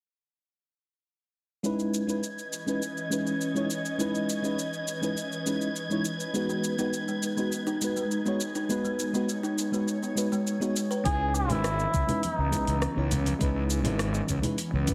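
Over a straight 4/4 pulse at 102 BPM, a smooth R&B drum kit of cabasa, metallic hi-hat and rim click sets a relaxed, blissful sunset chillout groove from 1.6 seconds, alongside a mellow FM electric piano that sits up front with round, full-bodied chords of C#m9 and B6, coloured by chorus and delay. An ethereal, detuned pad breathes in slow sustained chords beneath it, while a dark, breathy wind-like texture hovers high on G#6. From 6.5 seconds a woody kalimba plucks short arpeggios in the background, its notes trailed by delay. At 11.1 seconds the piece lifts as a punchy, overdriven fuzz bass enters up front alongside a knocking electronic kick, and a cup-muted trumpet sings a brief, veiled jazz line with vibrato; congas soon follow from the background. The whole excerpt is bathed in a lush digital hall reverb and pressed into a heavily compressed, radio-like sound.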